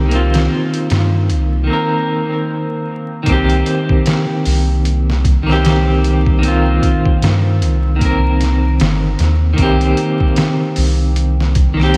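Smoky and brooding, this trip hop excerpt moves at 76 BPM in 4/4 with a swung sixteenth-note feel, sitting in C minor over a Cm7 chord. A clean electric guitar carries the accompaniment from the start, its dark, picked tone colored by tremolo and tape echo. Beneath it, a soft dub sub bass hums deep and round, a sustained blend of triangle and square wave with a fast attack. A sampler-style drum kit enters at 0.1 seconds, compressed and pitched down, with a gritty character, a thumpy kick, a medium-tuned snare and hi-hat, all touched with studio reverb. A break runs from 1.7 to 3.3 seconds before the next section carries the groove onward to the end of the fragment. The dreamy mix is soaked in a lush hall reverb and dusted with vinyl crackle, keeping guitar, bass and drums up front.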